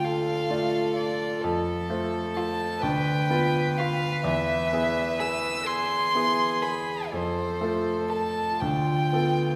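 Bathed in the wet reverb of a recital hall, this elegiac, solemn slow romantic movement for piano quartet, cut from a longer piece, unfolds in a rubato 6/8 at about 38-44 dotted-quarter beats per minute, with a clear, present grand piano accompaniment up front beneath an intimate, close solo violin melody played sul tasto with light vibrato and an airy bow, while a rich, floating cello and a pure, smooth-topped second violin, set in the background and falling silent at 8.5 s, add soft-attacked bowed second lines.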